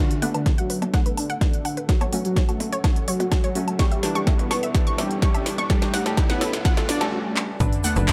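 Melancholic and dramatic, this melodic techno excerpt in a straight 4/4 builds tension across a wash of minor-leaning chords. A brassy, fat analog synth brass carries the melody from the background with chorus, vibrato and tape echo, shadowed by a very quiet, smooth supersaw second line, while a dark, moody analog pad and a blurred granular cloud pad sustain beneath. A round, detuned analog pluck spins arpeggios through cassette-tape colour, dub echo and sidechain pumping. A bright, wave-folded synth brass stab adds 12-bit sampler grit from 0.2 seconds and rides a filter sweep, alongside a riser and sub drop. The techno drum kit brings a cracking snare, smooth hats, handclaps, woodblock and percussion blips with a tape-tinged small-room sound, and a punchy, up-front electronic kick enters at 0.5 seconds. After a brief break, the impact at 7.6 seconds drops in a nasal, driving sequencer bass and a grainy egg shaker, all set in light reverb.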